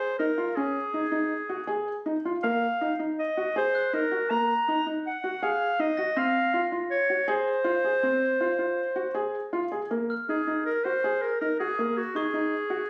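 A clear, classical-style solo clarinet carries the melody up front in this urgent, hypnotic contemporary chamber piece in an uneven 5/4 metre, cut from a longer work. A felt-muted upright piano sits close beside it with soft, mellow, intimate arpeggios. A dry, bell-like glockenspiel played with soft plastic mallets rings in the background at 3.8 seconds and again at 10.1 seconds, all heard through a phone recording in the room with light reverb.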